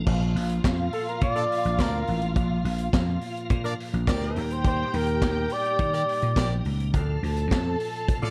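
Disco at 105 BPM in Bb major, joyful and glamorous, where a breathy, mellow flugelhorn carries the melody up front from 0.9 s over growly slap bass, a punchy vintage drum kit with handclaps and high-tuned snare, lush woody strings on a second line, clear horn stabs with tape echo entering at 1.4 s, and a piping tonewheel organ holding chords in the background through overdrive, chorus vibrato and slow rotary speaker, all in a dark, dry production moving from Bb to Ebmaj7 to Dm.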